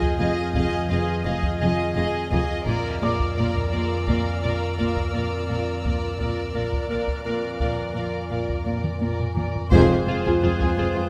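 Heavy-stick taiko drums drive a straight 5/4 pulse at 85 BPM in this uneasy, eerie suspense film cue, cut from a longer piece. A clear, floating violin section carries the melody over a rich second violin line, dark woody violas, soft-attack cellos and background double basses, all bowed sul tasto, with a faint, warm chamber violin layer high above. A pulsing, tempo-synced synth texture and a metallic, inharmonic drone with chorus and phaser add menace, while a felt-muted upright piano with audible action noise drifts in from 3.0 s. After a drum fill, mellow French horns and dark trombones arrive on a band accent at 9.7 s, all within a moderate scoring-stage reverb.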